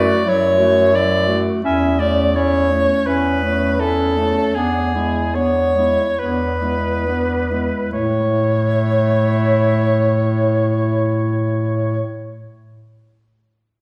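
Classical chamber music for a single-reed quartet, tender and lyrical, in A major at a very slow 33-45 BPM in 4/4 with a rubato feel. The soprano saxophone carries the melody up front with a clear tone, a soft attack and vibrato, over a lightly vibrato-tinged alto saxophone second line in the background, a present clarinet accompaniment and a warm, distant bass clarinet. The opening slows as it moves from F#m7 through A/E to E7, arriving on A at 7.9 seconds, with the excerpt set in the lush reverberation of a recital hall.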